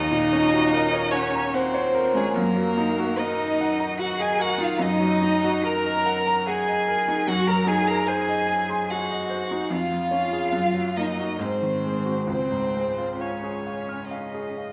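Heard in a wet recital hall with a 1.3-second reverb, the ensemble glows within an enveloping space. This slow, romantic classical movement for piano quartet moves in 3/4 at 72 BPM, its uneven beats stretched by rubato and its mood serene and warm. Up front, a bright baby grand piano carries the accompaniment with a brilliant, natural tone and long sustain, while one violin sings the melody in a rich, smooth, even line colored by vibrato. Further back, a cello with vibrato and a silky top holds a second line, and a distant second violin, expressive and sliding with portamento, adds another. The harmony travels from Ebm7 through Ab7/Gb and reaches Db at 12.3 seconds, before this passage, cut from a longer piece, breaks off at 14.7 seconds.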